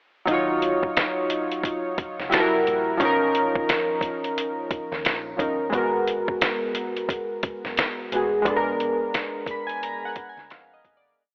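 Up front, chorused analog keys with a cassette-tape tint loop held, decaying chords in Eb minor over a muffled, pitched-down sampler drum kit with a thumpy kick and fat snare slumping off the grid at 88 BPM, while a dark, round fingered bass slides sparsely in the background of this nostalgic, reflective lo-fi hip hop piece, whose telephone-filtered sound fades out from 8.5 seconds as a short keys fill arrives at 9.1 seconds.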